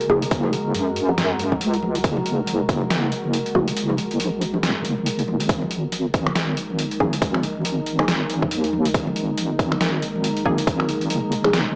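A warbling, moody pad, a deep, detuned wobble bass and a gritty, pitched-down trip hop kit of finger snaps, hi-hat and snare up front open this heavy, cavernous excerpt of half-time, swung deep dubstep. They are joined by a tight layered electronic kick that drops out from 3.8 to 5.5 seconds, very quiet bright congas, and a muted, nasal dub chord stab with phaser and dub echo under a filter sweep in the background, as the chords move from F#add9 to G#sus2 at 5.5 seconds, all steeped in spring reverb, vinyl crackle and a small-speaker home cassette sound.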